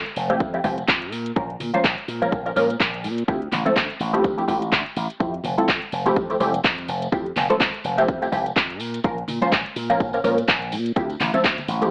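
A swung house groove drives this funky, feel-good slice of filtered disco house, where a punchy, tape-warm electronic kick and a house kit of handclaps and metallic hats sit up front, the hats pumping with sidechain, while tambourine and congas stay close and dry in the background under a low-pass filter. A bright, amped slap bass with an envelope filter pumps beneath a nasal, detuned polysynth comp that carries chorus, phaser and a filter sweep through a loop of Fmaj7, Bbm and Dm11 chords. Light reverb and an AM-radio sound frame the whole cut, which is taken from a longer piece.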